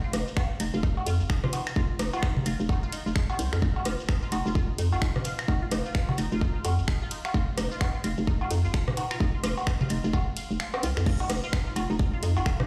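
A bright, squelchy blip pluck opens this hypnotic, cool minimal techno excerpt at 129 BPM with a swung 16th feel. Its riff is treated with phaser, analog chorus, delay and sidechain pumping, while a hollow, bouncy FM bass pumps up front beneath it. A tight, tape-warm electronic kick drives the groove from 0.4 seconds and drops out between 10.6 and 11.1 seconds, alongside a garage kit of crash, ride, hi-hat and finger snaps; a booming, overdriven analog drum machine of claves, cowbell, rim clicks and toms with reverb and delay; and a grainy shekere in the background, all set in the stone-room reverb of a big system in a bare space.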